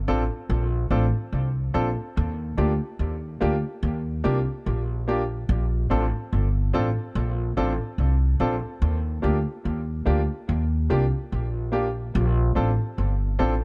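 A straight 4/4 pulse at 72 BPM carries this romantic, sweet lovers rock reggae passage in Bb major, cut from a longer piece, with the harmony moving between Bbmaj9 and Ebmaj7. An up-front pizzicato upright bass with gut strings gives a woody, thumpy low end throughout, while a clear, natural-sounding grand piano adds accompaniment touched with dub echo. The dry production keeps the overall sound dark and warm.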